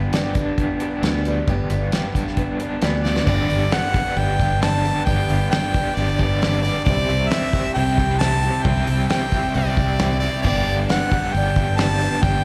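Folk rock and heartland rock at 134 BPM in G major, warm and nostalgic, heard as a live gig through the venue's PA with recital hall reverb, where a crunchy, double-tracked overdriven guitar riff with tremolo and slapback echo rides over a boxy, fresh-stringed swing-style acoustic guitar tucked in the background, an up-front fingered bass, a damped 70s kit with a fat snare and tight kick, and a faint jingly tambourine, until a clear, up-front harmonica solo full of vibrato and scooped notes enters at 3.0 s, just ahead of a drum fill at 3.1 s, as the chords move from G to C and back to G in this cut from a longer piece.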